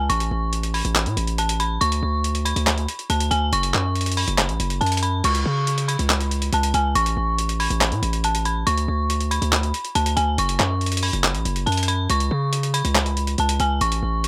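An eerie, warbling FM synth bell, detuned and treated with chorus, phaser, low-pass filter and delay, opens this brooding, dark trap fragment at 140 BPM in a half-time feel alongside a heavy, saturated 808-style bass with a noise layer, before a gritty, pitched-down, tape-warm sampler drum kit of hi-hat, handclaps and crash cymbal arrives at 0.1 seconds, the bass and drums sitting up front in a dry mix as the chords cycle through Asus2, Bmadd9/D, F#5 and a rootless Aadd9/C#.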